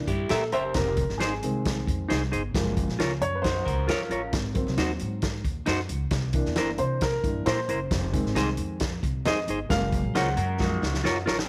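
A straight 4/4 groove at 134 BPM drives this joyful, uptempo 1960s-style soul, with a punchy vintage drum kit up front, thumpy pizzicato upright bass on gut strings, and clean, fingered stabs from a semi-hollow electric guitar. A dark, mellow upright piano solos throughout over chords moving through C7, Fm7, Gbmaj7 and Ab7. An electric guitar through a small old amp plays a slightly broken-up, lo-fi picked riff with phaser until 4.3 seconds and returns at 10.2 seconds, before a drum fill from 10.6 seconds, all in a natural small-room sound.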